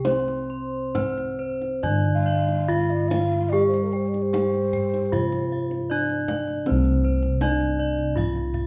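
Bronze metallophones open this serene, shimmering Javanese gamelan excerpt alongside round, beating bossed gongs and a deep, saturated kendang: an up-front wooden-mallet melody rings over a soft, padded-mallet accompaniment and bright horn-mallet arpeggios, while a breathy, mellow low xiao with vibrato drifts in as a second line from 2.1 to 6.2 seconds, set in a moderate recital-hall reverb.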